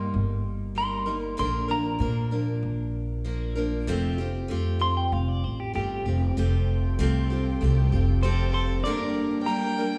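A straight 4/4 pulse at 96 BPM carries this wistful, melancholic acoustic folk passage, cut from a longer piece and set in a wet recital hall that lends it a churchlike bloom. A clean, twangy electric guitar leads the melody with tremolo and a scooped, fingered tone, taking a solo over a picked steel-string acoustic guitar that sits up front with a warm, auditorium-sized body. Beneath them, a plucked upright bass gives a woody, dark foundation until 8.8 seconds. The harmony moves from Eb/G to Bb and Fadd9 before settling on G minor. Muted chamber strings enter at 6.4 seconds, veiled and soft-edged in the background, and a single close fiddle joins at 8.2 seconds with a shadowy sul tasto tone, light vibrato and portamento.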